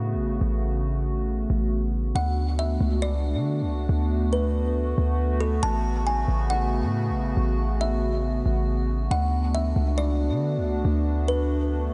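A woody, plucked kalimba enters at 2.2 s with a diffuse ambient delay, floating over a hollow, flute-like pad with chorus and a deep, boomy 808-style bass in this dreamy, half-time atmospheric cloud-rap excerpt, its mix soaked in huge reverb with a softened top end.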